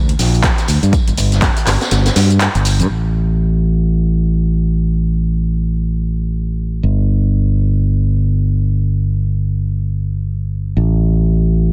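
Swung sixteenths drive this hypnotic, moody deep house excerpt, where a punchy, overdriven electronic kick, a deep house kit of handclaps, metallic hi-hat and shaker, and a vintage acoustic kit with a high-tuned snare, hi-hat and tambourine under a rolled-off top briefly join an up-front fingered electric bass, which pumps through a low-pass filter and carries on alone from 2.9 seconds to the close at 11.7 seconds in a dense, heavily limited master.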